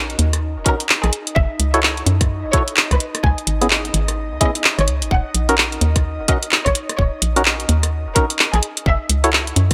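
Bouncy and late-night, this short excerpt from a longer piece is two-step UK garage at 128 BPM in 4/4, with a 61% swing on the sixteenths and an Eb phrygian colour. An airy, breathy pad holds sustained chords from the start, softened by chorus, roughened with vintage 12-bit sampler grit and pumping against the sidechain, while a hollow, knocking FM bass sits up front with a punchy, decaying bite. The garage kit of handclaps, hi-hat and rim click arrives at 0.1 seconds with warm hats, and a tight, layered electronic kick joins at 0.7 seconds, both placed forward in the mix. At that same moment a clear chamber violin section takes the melody, bowed with light vibrato and an earthy, biting edge beneath a smooth top, carried by delay, alongside percussive organ stabs that are sine- and triangle-based with a noise layer, chorus and delay. The harmony moves from Ebm7 through Gbm7 and Dbm7 back to Ebm7 before settling on Gb5 at 8.6 seconds, all framed by light reverb and a bright 1980s-style digital sheen.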